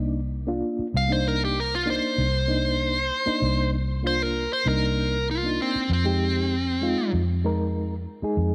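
Soulful and mournful, this short cut from a longer straight-eighth soul blues piece moves in a steady 4/4 from Cm7 to Fm7 at 5.9 seconds. A mellow, reedy electric piano with fast tremolo plays accompaniment throughout, under a round, foam-muted fingered electric bass that sits up front. From 1.0 to 7.1 seconds a dark, smooth overdriven lead guitar carries the picked melody, all of it set in a moderate echo chamber reverb.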